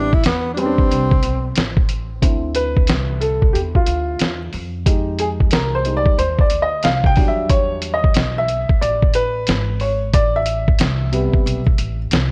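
A breathy, whispered tenor saxophone opens this nocturnal, cool jazz-hop excerpt in D dorian at 91 BPM, carrying a brief subtoned melody with vibrato and scooped notes through analog delay until 1.6 s. Beneath it sit a dark, mellow upright piano, a woody, growly pizzicato upright bass, and an up-front sampler-style drum kit, compressed and pitched down, with a thumpy kick, a medium-tuned snare and hi-hat swung on the 16ths. At 2.2 s the intimate, vintage-toned piano takes a solo over Dm9, Fm9, Em9 and Am9 harmonies, its action noise audible, while light reverb and studio ambience surround the muffled, large-room drums.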